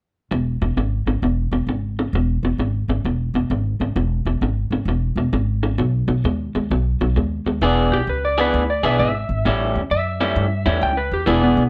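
A compressed, lo-fi electric guitar riff, slightly broken-up through a small old amp, opens this rollicking electric blues shuffle at 131 BPM in E mixolydian alongside a woody, pizzicato upright bass with steel strings, both up front from 0.3 s. At 7.9 s a fingered electric slide guitar enters with a soulful melody as the harmony moves from E7 to A7. Light reverb gives the excerpt a touch of room.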